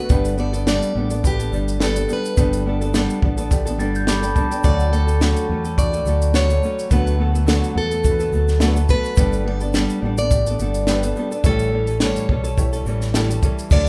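A picked, plugged-in steel-string acoustic guitar carries the melody through this carefree, sunny acoustic pop excerpt with a gentle swing, over a small fingerpicked nylon-string guitar, a woody, boxy upright piano in the background, a round, punchy fingered electric bass and a dry, up-front cocktail drum kit with dark cymbals, a high-tuned snare and a tight kick, while a grainy, very quiet tube shaker adds texture and a mellow, bell-like glockenspiel played with rubber mallets rings out briefly at 3.8 seconds, all heard as a band playing live together in one room with a moderate studio reverb.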